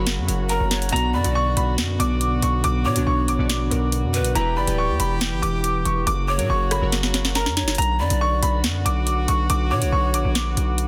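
Drill hip hop with a tense, menacing mood, moving in a half-time feel, this short cut from a longer piece opens with a clear, woody upright piano carrying the melody, slightly detuned and touched with tape echo. Beneath it, breathy large pan pipes with chiff and vibrato trace a second line, also echoed, while a bright brass ensemble holds sustained chords in a classical style. Glassy digital keys with chorus and a filter sweep fill out the accompaniment until 7.8 seconds, as a drum fill from 6.9 seconds leads into a return of the opening section. Anchoring it all, a saturated, distorted 808-style bass sits heavy and up front beside an overdriven electronic drum kit of metallic hi-hats, rim clicks and a sharp snare. The chords move from F# through Bm and Em before circling back, and the mix is dense and heavily limited, with a light reverb and small room ambience.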